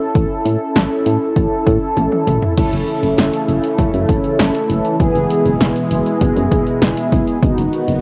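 Cool and melancholic, this short synth-pop excerpt moves at 99 BPM in a straight 4/4. A dark, brassy synth brass with chorus and cassette-tape colouring leads the accompaniment from the start, joined at 0.2 seconds by a round, fast-attack FM bass and a punchy analog drum machine whose tape-warm kick, snare, hi-hat, toms and crash sit up front. A drum fill at 2.0 seconds leads into a new section where a swirling, slow-attack pad with phaser and chorus arrives at 2.8 seconds, spreading sustained chords over an A-to-E-to-B progression held above an F# bass, all within a moderate spring reverb and the character of a home cassette recording.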